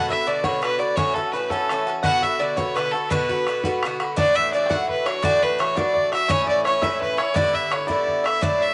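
Bathed in a moderate plate reverb with a rolled-off top end, this bright, lively Celtic jig in 6/8 at 113 BPM moves from B minor to D major at 4.2 seconds, led by an up-front, nasal, earthy fiddle with light vibrato over a metallic, double-strung picked bouzouki, with a very quiet, twangy, fingerpicked banjo second line and a damped, tight, vintage-sounding bodhran.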